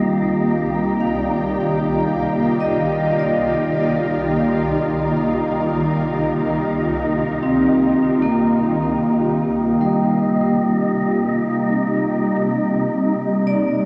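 Soaked in a huge, long-tailed reverb and the warbling pitch drift of worn cassette tape, this reflective, serene ambient fragment in free time, tuned to A4 = 439 Hz, sets a shimmering, detuned pad holding sustained chords up front from an opening Eb/C, beneath metallic, dark vibraphone arpeggios struck with medium hard mallets and trailed by tape echo, while a breathy, wind-like tuned noise texture sits quietly in the mix throughout its 13.9 seconds, the music moving into a new section at 8.9 seconds.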